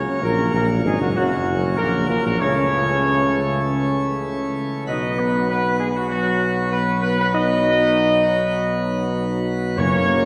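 In a straight 4/4 at 97 BPM, this majestic, triumphant classical fragment sets a punchy, up-front trumpet section's melody over dark, distant French horns, trombones with light vibrato, a brilliant plenum pipe organ with chiff, and a smooth-topped tuba bass, all moving through F#, A/C# and B chords in a wet church reverb, before hard-mallet timpani strike an articulate F# at 9.8 seconds.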